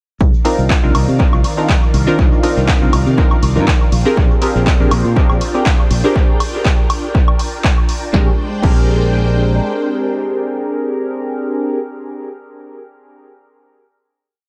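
Sunny, funky filtered disco house at 121 BPM in Bb mixolydian, where a dry, punchy four-on-the-floor electronic kick and a growly, bright fingered electric bass playing a syncopated line drive the groove alongside programmed hats, snare, claps, woodblock and crash from an analog drum machine and a very quiet egg shaker, while a sawtooth polysynth comps dotted-rhythm chords through chorus, phaser, tape and dub echo and a swirling phased string machine with vintage sampler grit sustains Cm11 and Bb13 under a filter sweep, with the bass, synths and drum machine pumping against the kick until the drums stop at 8.8 s and the strings and synth ring out on a final chord to 11.8 s.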